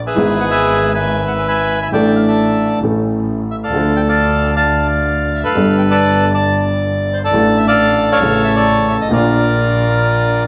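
Drenched in a large studio's lush reverb with a soft, darkened top end, this sultry, dramatic rubato tango excerpt captures a band playing live in one room: an up-front, reedy, airy bandoneon carries the melody over a polished concert grand piano accompaniment with deep bass and short sustain, while a single bowed double bass, warm and soft in attack, sings the bass line with vibrato and expressive portamento.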